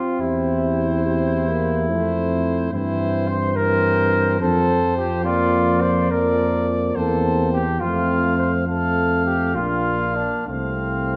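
This is a short excerpt from a classical brass quintet in F major, moving at a stately 70 BPM in 3/4 with a rubato, noble feel. The flugelhorn, French horn and trombone sound together from the start, and the trumpet and bass trombone join at 0.2 seconds, all five holding through to 11.2 seconds. A clear trumpet carries the melody high above with light vibrato, while a warm, soft-edged flugelhorn sits up front with the second line. Beneath them a dark French horn and a mellow, smooth-topped trombone fill in the accompaniment from the background, and a dusky bass trombone anchors the low end with light vibrato and gentle attacks. The harmony circles between C7 and F chords with touches of B-flat, and the whole ensemble blooms in a reverberant recital hall with a 1.6-second decay, giving the trumpet, flugelhorn and horn a distant, roomy quality.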